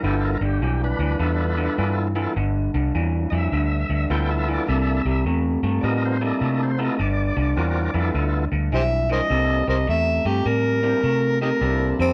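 An electric blues shuffle at 104 BPM with a soulful, swaggering swing, built on a slightly broken-up, lo-fi guitar riff and a dark, round, foam-muted bass up front, over a thick, key-clicking overdriven organ turning through a slow rotary speaker, moving from G13 to C13 and back before a gritty harmonica enters at 8.7 seconds with tongue slaps and scooped notes, and a raspy, growling tenor saxophone sounds a single C4 at 12.0 seconds as this cut from a longer piece ends.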